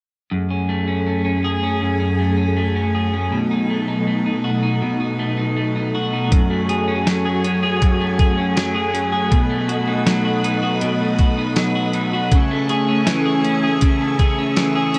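Blissful and dreamy, this dream pop excerpt pairs mellow, organ-like ensemble string chords and an up-front, slightly broken-up electric guitar picking chorused, tape-echoed arpeggios from 0.3 seconds, joined at 6.3 seconds by a detuned 8-bit drum machine with a thumpy kick, medium-tuned snare and hi-hat, all bathed in a moderate shimmer reverb as F#madd9 and B7 alternate before settling on Amaj7/C#.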